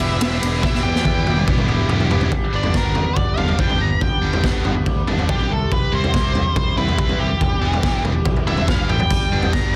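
A dark, fuzzy lead guitar carries the melody through tape echo and takes a solo from 2.3 seconds in this carefree, wistful indie rock clip, cut from a longer piece. Beneath it, an overdriven semi-hollow guitar with analog chorus and a scooped high-gain guitar play riffs over a growly picked bass sitting in the background, while a raw, gritty garage drum kit sits up front with a punchy kick and a couple of fills. A very quiet brass section holds bright sustained chords at the opening and returns near 9.1 seconds, and the dense, heavily limited master carries light reverb.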